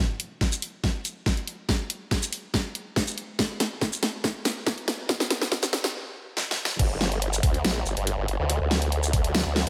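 Heavy and menacing, this fragment of half-time wobble dubstep is taken from a longer piece and spends most of its short run building toward a drop. A layered electronic drum kit with a huge, up-front snare, crash cymbal, hi-hat and shaker drives the build-up alongside a knocking kick, working through drum fills while a filter sweep runs over the first 6.8 seconds. A brief stop runs from 5.9 seconds, broken by a final fill at 6.4 seconds. At 6.8 seconds the drop lands and the formant-sweep wobble bass arrives up front, a compressed, detuned blend of sawtooth and sine with a fast attack, sustained notes, chorus and overdrive. Light reverb and a digital ambience surround the mix, which carries a high-pass filter.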